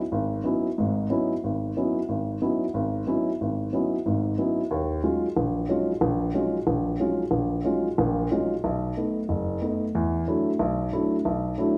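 A wet recital-hall reverb, with a 1.4-second decay, surrounds a solo grand piano heard in what sounds like a church or concert hall. The piano sits up front with a dark, mellow, intimate tone, and its long sustain and audible action noise bring the listener close to the instrument. This jazz fragment, cut from a longer piece, swings at 183 BPM in 4/4, set in C# dorian, and its mood feels hypnotic and searching. The piano plays alone from 0.1 to 11.8 seconds, ranging from F#1 to E#4 while moving through C#m11, D#m11 and B7. At 9.9 seconds the music shifts to a new section on an E9sus4 chord, which carries through to the end of the clip.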